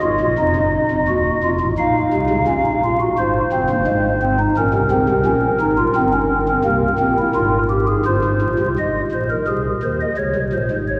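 Serious and solemn, this short cut from a longer baroque-style three-part fugue in Bb minor sets a solo pipe organ's soft, hollow stopped flute, with its chiff and tremulant, up front at a steady 86 BPM in 4/4, its lines ranging from Eb1 to F5 and moving from the opening section into a second section at 8.8 seconds, heard from further back in a cathedral's long reverb, tuned slightly low, with vinyl crackle.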